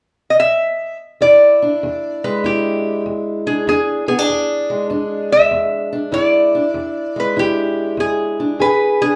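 A lap resonator guitar opens at 0.3 seconds, its metallic, nasal slide melody played with fingerpicks and sitting up front in this swaggering, rollicking snippet of acoustic country blues in E mixolydian, swung at 97 BPM. At 1.2 seconds a dark, boxy parlour steel-string guitar joins with fingerpicked accompaniment on an E7 chord, also up front. Both guitars share one room, caught live with a generous, large studio reverb.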